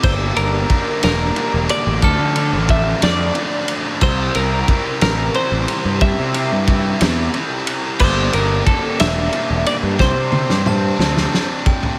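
A clean, compressed twelve-string electric guitar carries the melody in this carefree, wistful indie rock excerpt, moving at 60 BPM in a straight 6/8 in C mixolydian. A sparkling, bell-like glockenspiel played with brass mallets traces a second line in the background, and both parts are bathed in plate reverb. Beneath them, a bright high-gain distorted guitar with subtle chorus and a raw overdriven garage guitar set further back play the riff, while a punchy, fuzz-laden picked bass sits up front beside a gritty, saturated acoustic drum kit with a fat snare and rolled-off top, which plays a drum fill from 10.0 to 12.0 seconds in a lightly reverberant mix.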